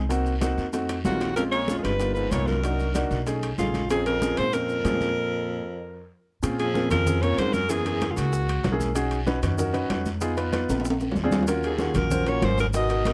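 A breathy, bright alto saxophone carries the sultry, fiery melody up front in this Afro-Cuban jazz excerpt, shadowed by a whispered baritone saxophone second line; the baritone enters at 1.0 seconds with the alto just behind at 1.1, both fall away at 8.8, and they return at 11.6 and 11.7, over woody pizzicato upright bass, an intimate grand piano with audible action noise, and a percussion bed of hard-handed congas, ringing timbales, very quiet bongos, raspy guiro and grainy maracas.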